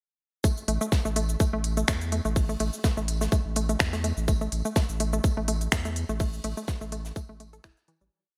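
Sparse and cool, this short minimal techno piece drops in at 0.4 seconds with an up-front, tight four-on-the-floor electronic kick, clicky programmed hats, cabasa and finger snaps, while a mid-forward acoustic kit of hi-hat, snare and tambourine sits in the background as a looped breakbeat with edits. A hollow, detuned square-wave pluck runs a bouncy 3-step loop that drifts against the bar, colored by chorus, 12-bit sampler grit, digital delay and sidechain pumping, over a thick, saturated sub bass playing a dotted rhythm from 0.7 seconds. The bright 1980s-style digital production carries light reverb and small-room ambience, and the whole piece fades out from 5.6 seconds.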